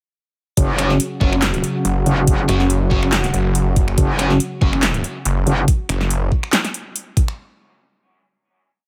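Light reverb and a digital ambience frame this aggressive, heavy wobble dubstep piece, which is a single half-time drop running from 0.6 to 7.4 seconds with a knocking electronic kick up front beside a punchy snare, metallic hats, finger snaps and handclaps. A metallic FM wobble bass with chorus and overdrive carries modulated phrases whose wobble speed changes, while a growling, detuned sawtooth bass with a moving notch, joining at 1.2 seconds, adds distorted, chopped phrases. A lush, nasal unison pad with chorus and sidechain pumping sustains chords in the background, and a thick fuzz guitar, double-tracked and treated with dub echo, drops sparse chord stabs that move one shape in parallel.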